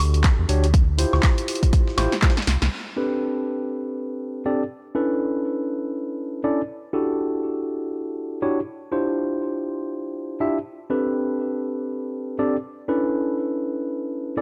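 Mellow tine electric piano stabs with sidechain pumping and digital delay open this deep, swung 121 BPM deep house fragment in A minor together with a round, dark analog bass, joined by an overdriven electronic kick up front, punchy analog drum-machine claps, hats, snare and woodblock under low-pass filtering, and a very quiet, gritty sampler-style hi-hat and snare, all drumming out by a fill from 2.0 s into a band accent before the bass also stops at 2.7 s, leaving the clean, direct piano alone over Em11, Dm11, Am11 and Bm11 chords until 14.4 s.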